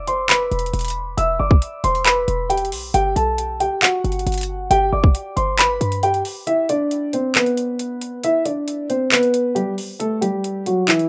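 This hip hop excerpt sits in a trap style at 136 BPM in 4/4 with a half-time feel, its tuning set slightly low at A4 = 438 Hz, and the mood is dark and eerie. A mellow, vintage-sounding baby grand piano carries the melody up front, ranging from E3 to E6 and bathed in plate reverb, moving from E5 to G and later to A5 with a stretch of unharmonized playing between. A short 808-style bass with a punchy, tight sine tone, a noise layer and a fast attack decays under the opening, dropping out at 6.2 seconds. The electronic, tape-warm trap kit sits up front with metallic hats, handclaps and a hard-clipped kick. At 6.5 seconds the second section begins and the kick falls silent, leaving the hats and claps with the piano. The whole piece has a rough home-demo quality inside a moderate small room, and it is cut from a longer piece.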